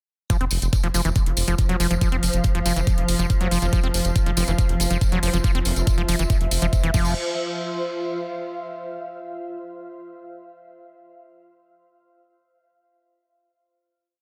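Hypnotic and intense, this short psychedelic trance piece runs at 140 BPM in a straight 4/4, built on a knocking electronic kick that sits up front in a four-on-the-floor pattern, with a garage drum kit adding metallic programmed hats, backbeat and crash, and a close, dry tambourine jingling in hand-played sixteenths. Underneath, a round analog bass rolls in deep sixteenth notes on F1 while an overdriven acid bass carves out a squelchy, gritty 16-step line with accents and filter sweeps, colored by dub echo and sidechain pumping. From 1.1 seconds a swarming, detuned drone holds sustained chords in the background, and an ethereal, airy pad drifts through slowly shifting chords with ensemble chorus, phaser and reverb, both breathing with the sidechain pulse. Between 4.4 and 5.8 seconds a very quiet formant-sweep wobble bass slips in short phrases as a second line. The groove ends at 7.2 seconds, leaving the pad to carry the final note to 8.8 seconds, all within a dense, heavily limited modern master set in digital ambience.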